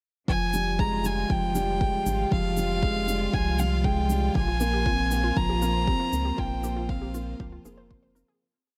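Piano and strings electronica in F minor at 118 BPM, melancholic and hypnotic, built on a four-on-the-floor overdriven electronic kick, a background shaker and a round sine sub bass with long gliding notes, while a felt-muted upright piano with audible action noise loops a 12-step arpeggiated riff drifting against the bar, a bright studio string section holds lush, pumping chords from Fmadd9 to Bbsus2, an earthy, biting solo violin sings an up-front arch-phrased melody until 7.4 s, and a warbling detuned unison pluck with tape echo joins at 4.4 s before the whole piece fades out from 5.7 s in a dry mix.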